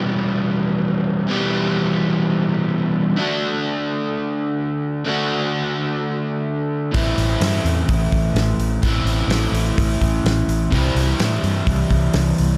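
A hazy, brooding shoegaze and dream pop excerpt opens on an overdriven semi-hollow guitar playing a riff alone, its double-tracked, hollow-bodied tone sitting up front and thickened by a lush chorus. The chords move from Em to D, then to Am and C, in a straight 4/4 rock feel. At 6.9 seconds a vintage muted fingered electric bass enters with a dark, round, foam-muted sound, joined at the same moment by a loose indie drum kit. The acoustic kit has the character of a small room, with a fat snare, a tight kick, hi-hat and a rolled-off top. Light reverb and studio ambience lend the mix a soft, enveloping haze.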